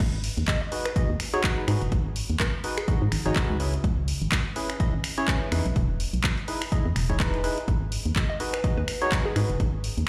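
Piano house with a bittersweet, soulful swing, built on a dark, up-front FM bass with an organ-like tone, tube saturation and sidechain pumping, a punchy, tape-warm electronic kick, and a layered house kit of crash, finger snaps, handclaps and warm hi-hats, while a percussive organ stab with lush chorus, cassette tape grit, sidechain pumping and tape echo carries the riff over jazzy seventh chords and a mellow, warbling square pluck drifts in the background from 0.5 to 3.1 seconds and again at 8.2 seconds, all heard as if played on a big sound system in a bare room with a large studio reverb.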